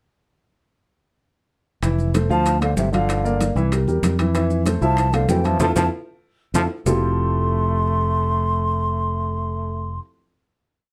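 Afro-Cuban jazz in F major at a brisk 191 BPM, this short, sunny and sophisticated piece sets a polished baby grand piano montuno in octaves over an up-front fingered electric bass tumbao that anticipates the chords, with bright congas, round saturated bongos, ringing metal-shell timbales and grainy maracas driving the groove, while from 2.3 seconds a pure, hollow concert flute carries a motif-based melody with vibrato and a soft attack and a brilliant, punchy trombone adds a scooped harmony line mostly in thirds, building to a band accent and drum fill before the percussion stops at 6.9 seconds and the ensemble holds a final Fmaj9 chord in light reverb.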